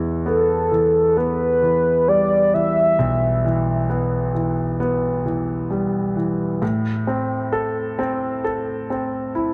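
A straight, slow 4/4 pulse at 66 BPM carries this melancholic, longing pop ballad fragment in E minor, where an intimate, up-front concert grand piano with deep bass and audible action noise plays the accompaniment throughout, moving from Em to Am at 6.6 s, while a mellow, round, horn-like synth lead of detuned sawtooth tone, with a filter sweep, soft attack, chorus, vibrato and portamento, sings a brief sustained melody from 0.3 to 3.9 s, the whole set in a dark, warm production with moderate plate reverb.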